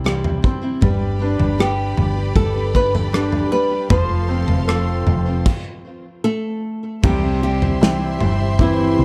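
Set in a studio reverb, this heartfelt, hopeful pop ballad excerpt opens with a clear concert grand piano with deep bass and short sustain. Beside it, a dark, picked steel-string dreadnought plays arpeggios with tape echo in the background, a woody, round fretless bass carries lush chorus, and an up-front acoustic drum kit brings a punchy kick, medium-tuned snare, rim clicks, toms and crash in a pumping room. Rich bowed symphonic strings with smooth vibrato sustain chords from 0.8 s, a warm, fingerpicked small nylon-string guitar takes the melody up front from 1.6 s, and the band breaks for a stop at 5.5 s before a new section arrives on C at 7.0 s.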